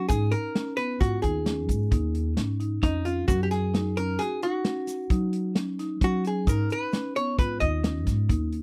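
Progressive instrumental band music in 7/4, this bright, intricate excerpt moves at 132 BPM with a straight feel, cut from a longer piece. A clean, dark archtop guitar, picked and compressed with a hollow-body tone, carries the melody as a jazz solo for the full 8.6 seconds, sitting up front. Beneath it, a marimba with medium mallets plays arpeggios on woody rosewood bars, while a growly pizzicato upright bass with steel strings anchors the low end close to the listener. A vintage drum kit with a punchy kick, medium-tuned snare, hi-hat and rolled-off top enters at 0.1 seconds, alongside a grainy egg shaker tucked in the background. The chords move from G#5 to F#5 to G#m, and the whole recording has the dry, close sound of a 1970s studio with little reverb.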